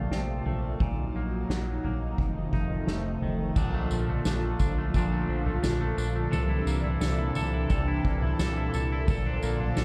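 Dream pop with a blissful, ethereal mood, cut from a longer piece and built on a lush, detuned unison pad that holds sustained chords up front through chorus and phaser, while a bright, twangy, clean electric guitar plays picked arpeggios with subtle chorus and delay. A round, deep analog bass sits underneath, and a distant, roomy drum kit played with soft mallets, with a rolled-off top, punchy kick, snare, toms, crash and tambourine, comes in at 0.1 s. The dark production carries light reverb and small room ambience, and the harmony moves through Bbmaj9, Ebm/Bb and F7 before a new section at 3.6 s shifts to Bbmaj7 and C13.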